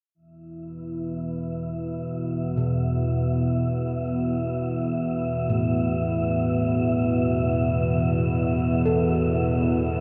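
A cavernous, cathedral-like reverb wraps this dark ambient drone in free time, an unsettling fragment cut from a longer piece and built around an E5 chord. A moody analog pad with chorus opens at 0.1 s, joined by a tense, string-like bowed drone held up front in the low register and a breathy, wind-like tuned noise texture on a single high note, while a filter sweep reshapes the synth drone. From 2.6 s, bronze gamelan-style bossed gongs trace delayed arpeggios in the background, their beating metallic tones glinting against the murk.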